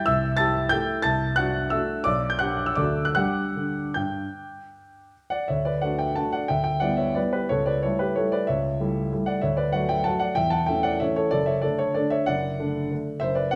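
A smooth, vintage-toned grand piano sits up front as the sole voice in this elegant, playful classical waltz, moving in three with a supple rubato and spanning from the deep bass to high treble. Moderate recital hall reverb surrounds the playing, and at 5.5 s the music settles into a new section built on D major harmony that carries through to the end at 13.6 s of this fragment cut from a longer piece.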